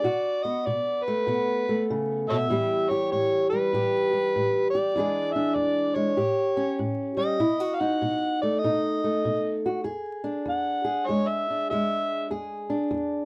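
An overdriven, amplified harmonica with gritty tongue slaps, scooped notes and light vibrato carries the jazz-inflected melody up front, taking a solo at 9.8 seconds over a dark, woody, fingerpicked old ladder-braced acoustic guitar in this rollicking, swung acoustic country blues excerpt, captured as a dry, close 1970s-style studio recording with light reverb and vinyl crackle.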